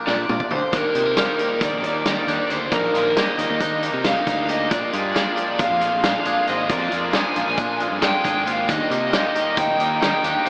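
An up-front, dark overdriven electric guitar carries the melody through lush chorus and tape echo in this wistful, playful math rock and midwest emo excerpt in 9/8 at 271 BPM in Eb major, joined by a loose indie drum kit whose fill at 0.1 s leads into a cranked, double-tracked stack guitar riff at 0.7 s, a punchy fuzz fingered bass, a twangy clean guitar with warbly pitch drift, and airy harpsichord arpeggios, all soaked in huge ambient reverb with a dreamy AM radio sound over Bb7 and Ebmaj7 chords.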